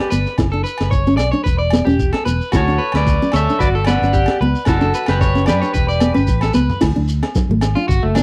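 A joyful, danceable highlife guitar band groove in D major at 112 BPM, lightly swung, with a close, dry 1970s-style studio sound in a small room. Two twangy, slightly broken-up electric guitars open together: one carries the melody through spring reverb until 6.5 s, and the other picks arpeggios with slapback echo. Beneath them sit a full-bodied fingerpicked nylon-string guitar, a round, dark bass up front, a compressed, gritty sampler-style breakbeat kit with a thumpy kick and high-tuned snare, grainy shekere, and ringing agogo bells in the background. After a drum fill at 6.6 s, a clean electric guitar solo takes over at 6.8 s as soft-handed congas join in the background, in this cut from a longer piece.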